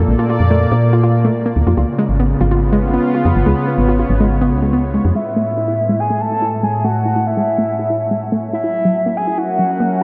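A warbling, nostalgic lead with vibrato, analog delay and a mellow, detuned tone carries the melody from 5.2 seconds in this wistful, intricate IDM excerpt at 142 BPM, moving through Amaj7 and F#7. Beneath it, a smooth sawtooth analog pad holds sustained chords, gaining a filter sweep in the second half, while a soft, vintage-toned pluck spins gentle arpeggios through a diffuse ambient delay. A dark, woody FM bass sits up front over the opening Bbmaj7 and C#7 changes until 5.1 seconds, and the whole dreamy mix is soaked in huge ambient reverb.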